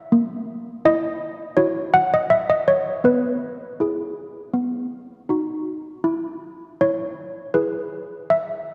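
Classical handbell tune in E major at 80 BPM, serene and festive, where solo malleted handbells with soft clappers sound mellow, damped and up front across this 8.7-second cut from a longer piece, moving from F#7/A# through E/B and B to settle on E, all set in a dark production with a lingering church reverb.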